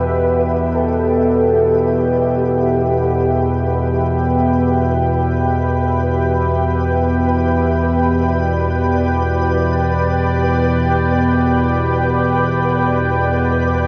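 Unmeasured and free-floating, this dark ambient drone excerpt feels vast and ominous, suspended in a cavernous, echoing space with a long reverb tail. A nasal, evolving analog drone sits low and up front with chorus, while a bright, resonant sweeping pad holds sustained chords above it, and a mellow, round horn-like synth lead with vibrato, portamento, chorus and tape echo sings a brief melody until 3.8 seconds. Far in the background, a flickering, grainy texture with its own reverb fades in across the full 13.9 seconds.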